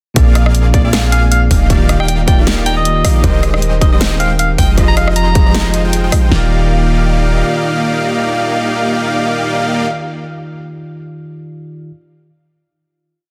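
Playful and lush, this future bass track moves at 156 BPM in Eb major with a swung half-time feel. A punchy kick and huge snare pair with a dubstep kit's hat rolls and rim clicks, while a deep, boomy 808-style bass holds sustained roots beneath a thick, detuned supersaw firing syncopated chord stabs that throb with sidechain pumping. A bell-like tine electric piano pushes held chords through delay, a soft, dreamy lead doubles the chords in the background with chorus, and a breathy pad sits very quietly underneath. At 0.7 seconds a jazzy alto saxophone with vibrato enters with short answering solo phrases, and after the drums fall away near 6.4 seconds the music settles onto a final Ebmaj9 chord, with the electric piano ringing on alone until 11.9 seconds.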